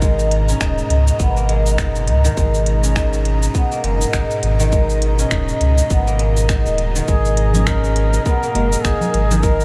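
Organic downtempo with a meditative, dreamy feel, where a silvery guzheng ripples arpeggios through diffuse delay over an airy, breathy pad, a round, up-front sub bass, a tight electronic kick and a produced electronic kit of cabasa, finger snaps and smooth hats, all held on one chord in a reverb-soaked space until a clear, folk-style duduk with vibrato and scooped notes enters at 7.1 seconds, joined at 7.5 seconds by ringing congas and bongos in the background.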